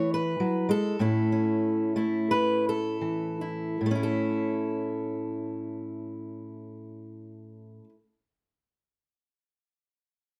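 A single fingerpicked steel-string acoustic guitar opens this short folk fragment, cut from a longer piece, on an Eadd9 chord before settling onto A at 1.0 seconds. The mood is gentle and warm, in A major and 4/4 with a straight feel, and the tempo sits somewhere between 73 and 105 BPM, easing back through the first 3.8 seconds. The guitar plays alone for the full 8 seconds, covering a range from A2 up to C#5, its tone warm and close, placed up front in the mix like a concert instrument. A second passage begins at 3.8 seconds and carries through to 7.1 seconds. Around the guitar, a moderate large-studio reverb adds a sense of open space.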